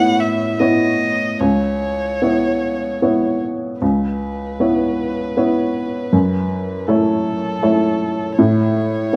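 A felt-muted upright piano sits up front with a mellow, vintage, short-sustained tone beneath a single close, airy-bowed violin melody played sul tasto with light vibrato, in this melancholic, reflective neoclassical fragment in C# minor that moves in a rubato 3/4 at around 74-80 BPM through Aadd9, C#m7, F#m7 and A chords, heard as an intimate live performance in one room with light reverb.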